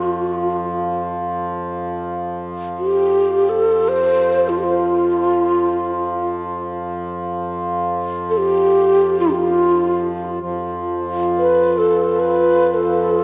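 This meditative world piece floats in free time, its spacious, peaceful mood centred on F lydian. A breathy low xiao carries the melody from the start, close-miked and up front, its bamboo tone soft in attack, warm with vibrato and slightly unsteady, with a delay trailing each phrase. Beneath it a pedal harmonium holds a reedy, full drone, dry and close, with a breathing quality that lends the low end a sense of air. At 10.7 seconds a glass harmonica joins in the background on a single F4, its pure, ethereal tone arriving with a slow attack and a beating shimmer. A wet church reverb and a dark, warm production wrap the parts in a long, dim space, and the recording is cut from a longer piece, ending at 13.2 seconds.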